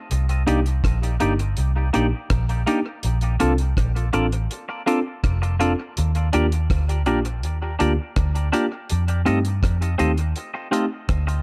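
Round, foam-muted fingered electric bass sits up front in this smooth, sweet lovers rock reggae excerpt alongside a dry, dark drum kit of kick, hi-hat and rim click touched with dub echo. They are soon joined by a mellow tine electric piano played through its built-in speakers and bright, twangy electric guitar stabs that also carry dub echo, all over a Cm9, Bbmaj7, Ebmaj7, F7 progression in a dry room.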